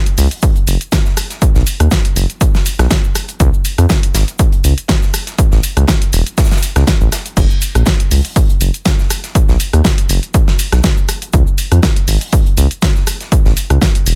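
Deep house with a relaxed, lightly swung groove, cut from a longer piece and kept fairly dry. A punchy analog kick sits up front beside a layered electronic kit with a fat, tape-warm snare, cabasa, crash, hi-hat and rim click, while a very quiet acoustic rock kit adds faint hi-hat, shaker and snare underneath. The round, mellow analog bass, blending sawtooth, sine and triangle tones that evolve over time, pumps with sidechain compression and gives the whole a warm, deep low end.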